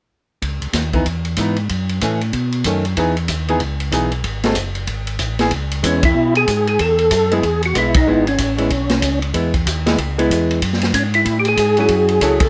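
Bass organ and drums start together at 0.4 seconds in this bluesy, soulful soul jazz organ trio excerpt, the organ's lightly overdriven, round low end turning through a slow rotary speaker with chorus vibrato beneath an acoustic kit of hi-hat, kick, ride and medium-tuned snare. The drums sit up front with a punchy kick and a rolled-off top, sounding natural in a small room, and the swung feel carries a fast, driving pulse. A clean, hollow-body archtop guitar joins at 0.9 seconds, adding dark, picked accompaniment as the harmony moves from a minor ninth through seventh and dominant colours. At 5.9 seconds a second organ takes the melody, clean and percussive with third harmonic percussion, its mellow tone also spun through slow rotary and chorus vibrato and placed prominently above the band. The group hits accents together at 6.0 and 7.9 seconds as the harmony settles onto a minor seventh, all set in light reverb before the cut.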